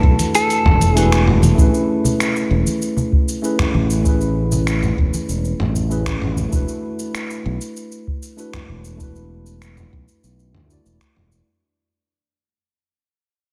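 Sunset chillout in a blissful, smooth mood, opening with a short picked phrase from a compressed clean electric guitar with tape and slapback echo that stops at 1.2 seconds, over a worn, slightly out-of-tune tine electric piano played up front through a combo amp with a low-pass filter and digital delay. A bright, direct fingered electric bass with tube saturation sits up front beside a deep analog electronic kick and a gritty, compressed sampler-style soul kit of finger snaps, hi-hat, shaker and toms, while soft-handed congas stay in the background until 6.5 seconds. The harmony moves from E9sus4 to Amaj9 and back, and the excerpt fades out from 1.6 seconds inside a moderate concert hall reverb that gives an arena-sized sound.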